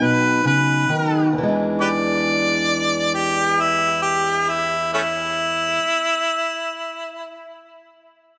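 A warm, up-front harmonica with light vibrato, tongue slaps and scooped notes carries a jazz-tinged melody through delay in this swaggering, gritty acoustic country blues fragment in 12/8 at 45 BPM, easing out of a slowing opening on B7 before settling onto E7 at 1.3 s, while a boxy, fingerpicked parlour steel-string guitar with fresh strings and audible finger squeak accompanies until 5.9 s, the mix soaked in a dreamy plate reverb.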